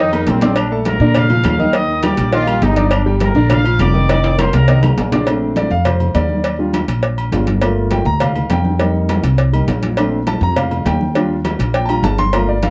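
Festive and danceable, this salsa passage, cut from a longer piece, runs at 204 BPM in Bb major. It opens with a punchy, tight trumpet section on the melody over a trombone section playing a second line, with the trombones dropping out at 3.1 seconds and the trumpets at 4.8 seconds. A clear concert grand piano with audible action noise accompanies throughout and takes a solo from 5.3 seconds, while a thumpy, up-front pizzicato upright bass with gut strings anchors the low end; ringing congas and woody claves sit distant in the background alongside vintage timbales and agogo bells and a round, saturated cowbell, in a dry, close 1970s-style studio sound with small room ambience.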